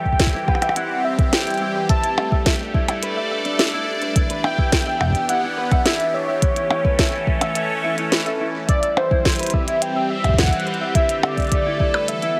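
A soft, up-front electronic kick and a glitchy kit of clicky hats, tiny snare and percussion blips set a straight 4/4 pulse at 106 BPM in this cerebral, intricate IDM excerpt, with the kick dropping out at 12.1 seconds. Beneath them, a swirling, detuned sawtooth pad pumps with sidechain under phaser and chorus, while a fingerpicked Celtic harp rings out arpeggios roughened by 12-bit sampler grit and digital delay. A velvety, smooth synth lead carries the melody with vibrato, chorus and tape echo over chords moving from C through Dsus4, Em7 and A, set in a light reverb.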